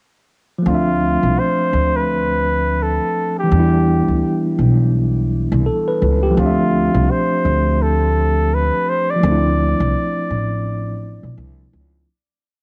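Nostalgic and melancholic, this short lo-fi hip hop piece in D dorian moves at 84 BPM with a swung 16th feel: a clean tine electric piano, softened by cassette tape and a low-pass filter, holds rootless chords with short fills over Dm7 and Em7; a mellow, breathy flugelhorn plays scooped, jazz-style call phrases built from a motif; and an up-front, woody, thumpy pizzicato upright bass on gut strings plays a sparse line with chromatic approach notes, the whole piece sitting in studio reverb with a homemade cassette character before it fades out from 9.2 seconds.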